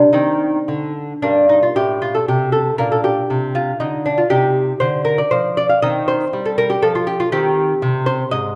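A solo lute, mellow and delicate with double nylon strings and some octave-doubled strings, sits up front as it is fingerpicked through a grave, introspective baroque-style dance in triple time, its uneven beats stretched by rubato while the harmony moves between C minor and G minor, set in the dark production and moderate reverb of a recital hall in this short fragment cut from a longer piece.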